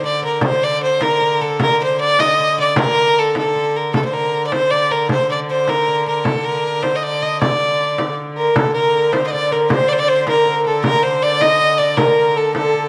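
Set in a straight 6/8 at 104 BPM counted in dotted quarters, this short cut from a longer medieval dance gradually speeds up over its 12.9 seconds, carrying an ancient, mysterious mood. A single fiddle carries the melody up front, its tone clear and intense with an airy bow, light vibrato and a slightly boxy edge. Beneath it, one hurdy-gurdy holds a close, earthy drone on D3, its wheel-bowed, keyed sound rich, biting and nasal. A small frame drum struck with hard hands gives the percussion a vintage, band-limited character. At 8.4 seconds, just before the opening section comes round again, a wooden flute slips in behind with a second line, soft in attack, bright with lifted highs and vibrato, and trailed by tape echo. The performance sits in a small room with a wet echo chamber reverb.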